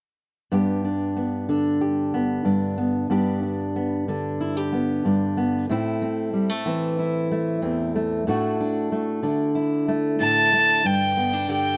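A straight 4/4 pulse at 93 BPM carries this uplifting, nostalgic folk fragment in G major, where a dark, up-front fingerpicked steel-string acoustic guitar moves through G, Am and D/A before settling back on G at 10.8 s, and a reedy, gut-string bowed fiddle with slapback echo enters up front at 10.2 s for a brief high melody, all within a light reverb.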